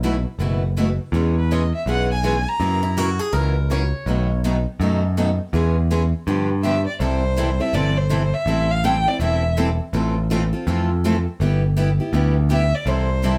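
Heard from further back in a studio room with moderate reverb, this lively, charming stretch of jazz manouche, cut from a longer piece, moves with a swung 4/4 feel. Two picked steel-string acoustic guitars carry the accompaniment throughout, one with a concert-sized ring and the other a boxy parlour tone, while a punchy, up-front electric bass with a bright, direct edge anchors the low end. A single bowed violin takes the melody in short phrases from 1.4 s, warm and focused with a smooth top and vibrato, sitting up front in the mix. Briefly, from 2.8 s, a picked swing-style acoustic guitar with fresh strings adds a second line. The harmony moves through sixth and seventh chords before shifting into a new section at 7.0 s, shortly after the violin returns at 6.6 s to carry the tune onward.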